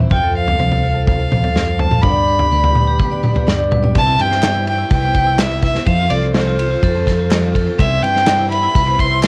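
A straight 4/4 pulse at 125 BPM drives this uplifting, anthemic indie folk excerpt in C major, where a natural country drum kit with punchy kick and ride cymbal sits beside a round, dark fingered electric bass. A shimmering, octave-doubled twelve-string acoustic guitar picks an accompaniment in the background, while a bright vibraphone ringing with fast motor vibrato traces arpeggios. Up front, a woody fiddle carries the melody with light vibrato, and from 4.4 seconds a crisp group handclap joins behind the arrangement as the chords move from F and G into Cmaj7. The home cassette recording, with light reverb, lends tape character to the guitar, fiddle, vibraphone and drums.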